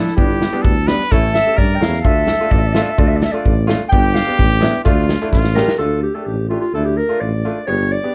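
A clarinet solo opens this festive, bittersweet klezmer excerpt in D harmonic minor at 128 BPM in 2/4. Its mellow, distant tone carries the melody over a nasal, straight-muted trumpet second line and a bright, woody upright piano with audible action noise, while an up-front tuba with light vibrato and scooped notes anchors the bass. A punchy, natural country drum kit of kick and snare plays until a fill at 5.3 seconds; trumpet and drums then stop at 5.8 seconds, leaving clarinet, piano and tuba in a dark production with light reverb.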